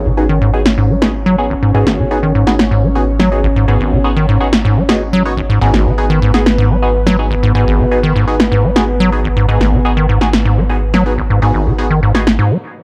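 Dark, lightly reverberant small-room sound frames this driving, hypnotic acid house excerpt at 124 BPM in G# minor, where a squelchy, resonant square-wave acid bass riff sits up front over a deep, round analog bass holding G#1, a nasal band-passed chord stab with phaser, dub echo and a filter sweep, smooth chorused pad chords on G#m7, a barely audible acoustic studio kit, and a punchy, overdriven electronic snare that enters at 0.7 s, before a brief break at 12.4 s.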